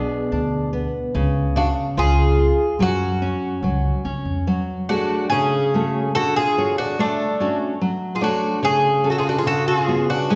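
A reverberant recital-hall sound surrounds this fado-style ballad, its tone dark and rounded with the highs gently rolled away, in a short excerpt cut from a longer piece. Set in F# harmonic minor at 72 BPM in a loose, rubato 2/4, the mood is one of longing and passion, moving through chords such as G#dim, F#madd9, Dmaj7 and a closing C#7sus4. An up-front Irish bouzouki carries the melody with a picked, metallic ring from its doubled strings, while a woody nylon-string guitar, fingerpicked in a classical manner on old strings, supplies the accompaniment just as prominently. Beneath them, a fingerpicked twelve-string acoustic guitar adds a quieter second line, boxy yet shimmering with octave doubling, a touch of swing and the odd finger squeak. A pizzicato upright bass with steel strings joins at 0.3 s with a close, round low end and drops out at 4.4 s, leaving the three plucked instruments to finish together at 10.4 s.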